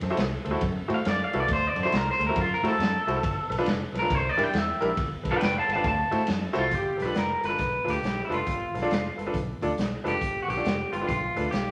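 Electric blues shuffle at 137 BPM in G mixolydian with a rollicking, swaggering swing, where a twangy, slightly broken-up guitar through a small old amp enters up front at 0.9 s with a picked solo bathed in spring reverb, over a brilliant, intimate grand piano with audible action noise, a direct fingered electric bass, and a gritty, saturated garage drum kit with a punchy kick, medium-tuned snare, hi-hat and ride, all set in a studio reverb in this excerpt cut from a longer piece.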